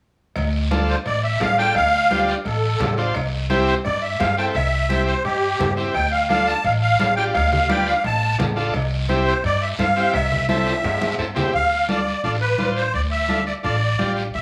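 A driving cumbia groove at 172 BPM in straight 4/4 sets this danceable Latin excerpt in motion, cut from a longer piece in D dorian and moving between Dm and C. Woody, growly pizzicato upright bass sits up front beside ringing, hard-handed congas and a raspy, band-limited guiro, while cowbell and timbales ring from a distant large room in the background, dropping out as a drum fill from 10.5 to 11.5 seconds closes the first section. A buzzy, overdriven combo organ with light vibrato fills in the accompaniment in the middle register. Over it all, a reedy musette accordion carries the melody, close-miked and dry yet shimmering from its wet tuning, with an analog delay trailing its lines. A moderate studio reverb and small room ambience frame the band, and at 11.5 seconds a new section returns to Dm and runs to the end at 14.4 seconds.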